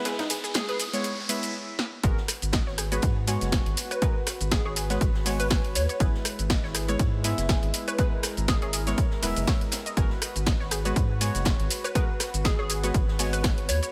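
A swung groove drives this smooth, hypnotic deep house excerpt, built on a punchy, tape-warm analog drum machine whose hi-hat, rim click, shaker and snare sit up front, while a very quiet acoustic jazz kit with dark cymbals and a high-tuned snare adds hi-hat, ride and snare from a small room behind it. It opens with a build-up where an electronic riser runs until 1.5 seconds, a brief stop follows, and a drum fill leads into the drop at 2.0 seconds, where the up-front electronic kick and a round, dark analog bass enter together. Over the chord changes, a soft, sustained sawtooth pad and a deep, mellow chord stab with 12-bit sampler grit, filter sweeps and tape echo both pump against the kick, the stab sitting louder in the mix. A bright, detuned sawtooth pluck spins arpeggios in the background through cassette tape saturation and dub echo. A hollow, bouncy square-wave pluck with a noise layer and ensemble chorus carries a short melody in brief phrases, all under a light reverb.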